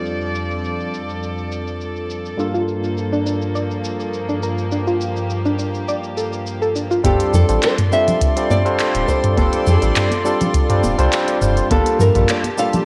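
A relaxed, sunny sunset chillout excerpt in F major at 103 BPM opens with a barky tine electric piano through delay and a reedy chamber string section with light vibrato holding sustained chords, joined almost at once by a smooth R&B kit of filtered handclaps, hi-hat, shaker and toms, while a soft, dark, chorused pluck adds arpeggios from 2.4 seconds before a deep sine sub bass, a tape-warm electronic kick and background congas under soft hands arrive at 7.0 seconds, followed at 7.1 seconds by a small fingerpicked nylon-string guitar melody with delay, the whole mix set in a moderate digital-ambience reverb with worn, warbling cassette-tape pitch drift.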